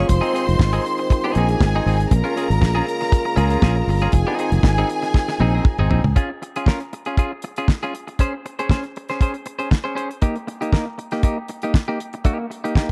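Glamorous and driving, this disco excerpt opens with a full band in a dry, close 1970s-style studio sound. A damped acoustic drum kit sits up front with a fat snare and tight kick, while a dark, round fingered electric bass with a foam-muted tone anchors the low end over Fm7 and Bbm7 chords. Above them, a lush, focused string section carries a bowed second line with vibrato, and a distant, roomy French horn section holds soft-attack sustained chords beneath. A clean, picked semi-hollow electric guitar with spring reverb supplies compressed accompaniment throughout. After a drum fill from 5.1 seconds, the strings, horns and bass stop at 6.1 seconds, leaving guitar and drums to carry the next section through shifting chords from Db to Eb/Bb.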